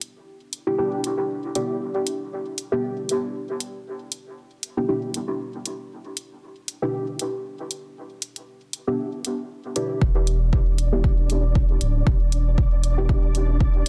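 Dub techno in a cavernous, deep mood, this excerpt opens with a soft, nasal chord stab on Em7, pumping through chorus, phaser and dub echo, over dark electronic hi-hats, until at 10.0 seconds a deep kick and a round, soft sub bass arrive, joined at 10.3 seconds by a flickering, grainy granular texture with its own reverb, all within a dense, heavily limited master.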